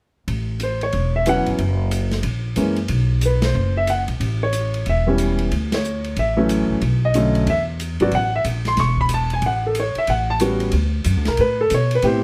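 A natural-sounding grand piano carries the melody up front, touched with plate reverb, in this relaxed, playful jazz piano trio excerpt swinging at 184 BPM in A major. A woody pizzicato upright bass with steel strings sits close beneath it, while an airy drum kit in a small room adds dark cymbals on ride and hi-hat, a medium-tuned snare and a boomy kick. The trio hits shared accents at 3.4 and 5.7 seconds, with harmony moving through chords such as Dmaj9, Bm7 and A13 before a brief new section begins near the end.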